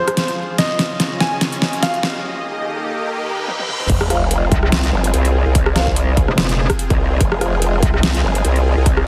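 A growling, formant-filtered bass erupts up front at the drop at 3.9 seconds, joined by a metallic FM wobble bass, a punchy overdriven electronic kick and distant, dark brass stabs in this heavy, menacing, half-time wobble dubstep excerpt. Before the drop, a bright baby grand piano with audible action noise plays a brief delayed melody over a lush, detuned supersaw pad with sidechain pumping and a filter sweep, while an overdriven dubstep kit with a deep snare and metallic hats plays fills and a riser, reverse cymbal and sub drop build through a short break. The mix is heavily compressed with a radio-like, high-passed sound inside a lush hall reverb, and the chords move from Fm through Dbadd9 and Eb back to Fm.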